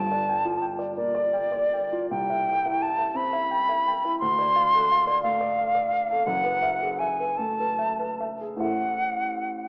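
Pastoral and luminous, this excerpt from a longer impressionist piece for flute and baby grand piano drifts in a rubato 6/8 at roughly 46-60 BPM, counted in dotted quarters. The concert flute carries the melody between D5 and C6 with a pure, hollow tone, close and up front, its notes tongued and shaded with vibrato. Beneath it the piano accompanies across a broad span from F#1 to G5, its dark, mellow voice natural and short in sustain, sitting further back than the flute. The harmony moves through Gm7, Cmaj7, Dm7 and F#m11 before settling on Am6 at 8.6 seconds. A moderate scoring-stage reverb surrounds the duo, while a worn cassette-tape character adds warbly pitch drift and a small-speaker sound that lend the 9.7-second fragment a worn, faded glow.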